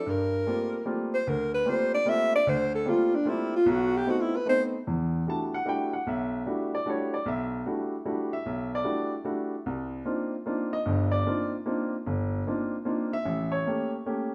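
A breathy, close-miked alto saxophone with a whispered subtone, vibrato and scooped notes leads this cool, spiritual jazz waltz at 150 BPM with a swung 3/4 feel, over a polished, present grand piano that accompanies from 0.1 s. At 4.6 s the saxophone drops out and the piano carries the minor-eleventh and altered dominant harmony on its own through 14.3 s, all within the wet glow of a stone room where the players perform live together.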